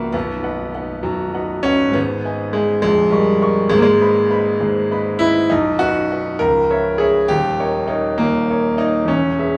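Passionate and bittersweet, this brief classical fragment is a romantic character piece for solo piano, cut from a longer work. A grand piano carries it alone, sounding clear, natural and up front, and it ranges from the deep bass up to the upper treble. The music moves in a lilting 6/8 with a flexible, rubato feel that lets the phrases breathe and press forward. The harmony shifts between B and G-sharp minor, leaning on D-sharp dominant chords that pull the line with yearning tension, and a C-sharp minor seventh near 6.4 seconds deepens the ache before the final D-sharp seven at 7.3 seconds leaves the passage hanging. A moderate studio ambience with a small room's reverb keeps the sound intimate and close.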